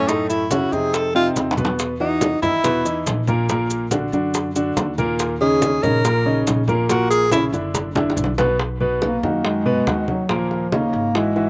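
A breathy, close-miked tenor saxophone with scooped notes leads this danceable, sophisticated Afro-Cuban jazz fragment until 7.5 seconds, its slapback echo shared by a smooth vintage grand piano, over a woody, growly pizzicato upright bass, tight high-tuned bongos, low-tuned congas in the background and grainy maracas that drop out at 8.6 seconds, before a mellow bass clarinet with vibrato takes the solo from 9.0 seconds, all in a dry outdoor sound.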